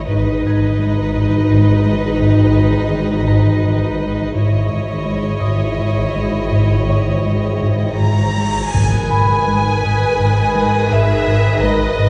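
A tense, mysterious cinematic passage in G# minor at 84 BPM in 3/4 opens on a swarming, detuned drone and a round, deep analog bass riff in the background, over a G# minor chord. Around them, bowed string sections play with vibrato: a smooth violin melody sits high above a focused second violin line, while a lush, distant cello section and a very quiet double bass section anchor the low end. A ringing, fingerpicked concert harp adds texture in the background. At 8.2 s a huge, bright cymbal swell builds into an impact at 8.7 s, when a lush viola section enters with accompaniment and a soft-attack violin texture joins high in the background at 8.8 s. Most of the strings sound close and studio-recorded, yet the whole is set in a wet recital hall reverb that places it further back in the room, and the passage is cut from a longer piece.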